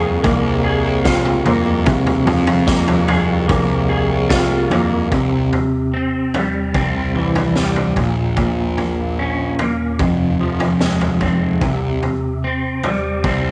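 A dark, hypnotic psychedelic rock excerpt at 74 BPM opens with a bright, clean semi-hollow electric guitar riff through a rotary speaker, doubled and up front, over a fuzzy, overdriven picked bass, a soft flute-like tonewheel organ holding chords on slow rotary with audible key click, and a quiet, reedy harmonium drone on C. A gritty, saturated garage drum kit with a boomy kick and high-tuned snare drives the groove, joined from 1.5 seconds by barely audible ringing congas, and a drum fill leads into a new section at 5.1 seconds, where the organ, harmonium and congas drop away. The guitar, bass and drums carry on alone through a shift from C to Bbm, Fm and a closing C5, all in light reverb with a rolled-off top.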